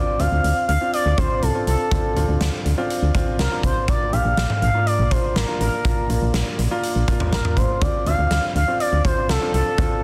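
A short cut from a longer synth-pop piece in D minor at 122 BPM opens on a smooth, dark sawtooth lead that glides between notes with vibrato, chorus and tape echo, over a present baby grand piano and a round, punchy FM bass, all moving through Dm7, Bb and back to Dm7. At 0.2 seconds a huge, natural-sounding arena drum kit arrives up front, with hi-hat, snare, toms and a punchy kick, giving the melancholic mood a driving 4/4 push. The sound is dense and heavily limited, with light reverb and a small-room ambience.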